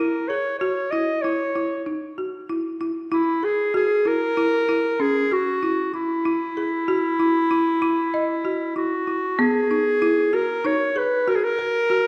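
Heard from further back in a wet recital hall, this pensive yet urgent contemporary instrumental excerpt in 5/4 at 96 BPM pairs a clear, classical-style solo clarinet melody up front with bright, woody folk marimba arpeggios struck with hard mallets, the harmony moving from F#7 to Esus2 before a new section opens on Emaj9#11/B at 9.4 seconds.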